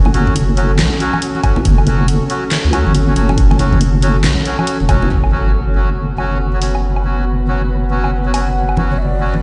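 A deep, soft wobble bass with a detuned square-and-sine tone and chorus sits up front in this dark, meditative slice of deep dubstep at 139 BPM in F# minor, with a half-time, swung feel. A cloudy granular pad holds sustained chords, reedy melodica stabs trail dub echo, and a knocking, tape-flavored kick joins damped congas and a filtered kit of deep snare, hi-hat, handclaps and woodblock. The kick drops out at 5.0 s as a background impact hits at 5.1 s, a filter sweep moves over the drums, an airy wind-like noise texture drifts in, and a distant, breathy ney with vibrato enters at 8.9 s, all heard through stone-room reverb on a big sound system.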